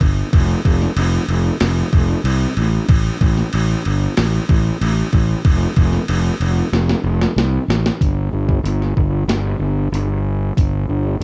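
Dry, cassette-taped home-recording grit frames this dreamy, wistful rock fragment in a shoegaze and dream pop vein, where a growly, overdriven fingered electric bass sits up front beside a crisp 8-bit drum machine with a thumpy kick, medium-tuned snare, hi-hat and crash, the drums breaking into a fill from 6.7 to 8.0 seconds before a new section arrives and they stop at 10.7 seconds, leaving the fuzz bass alone to 11.2 seconds.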